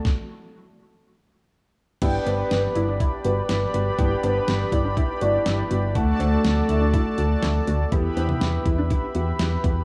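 A straight 4/4 pulse comes from a detuned 8-bit drum machine with a thumpy kick, snare, hi-hat, toms, cowbell and crash, sitting up front beside a bold, brassy analog pad with chorus and tremolo; for the first 2.0 seconds the two play alone. At 2.0 seconds this wistful yet bright synth-pop excerpt moves onto G, then D and Em, as a punchy, round FM bass, an intimate grand piano with audible action noise, and a lush detuned unison pluck in the background playing arpeggios through tape echo all enter, while a mellow synth brass line with vibrato and tape echo sounds until 5.4 seconds. The dreamy mix is soaked in plate reverb.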